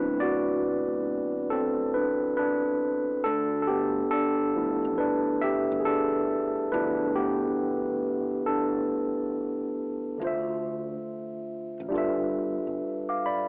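A home cassette recording with a telephone-like sound and a moderate spring reverb gives this short lo-fi hip hop passage, cut from a longer piece, a melancholic, hazy air. At a slow 69 BPM in 4/4 with a swung sixteenth-note feel, a worn, slightly out-of-tune tine electric piano sits up front, clean and heard as if through built-in speakers, with cassette tape colour and a low-pass filter dulling its top. It carries the harmony and takes a solo through the opening section, moving from D13 to G13 before shifting to Dm9 and back to G13 when the second section arrives at 10.2 s. Beneath it, a sustaining fretless electric bass plays in the background with a growly, direct and amped tone thickened by analog chorus, holding the low end until 12.8 s. The electric piano rings on alone to the close at 13.5 s, its tuning set slightly below standard pitch at A4 = 439 Hz.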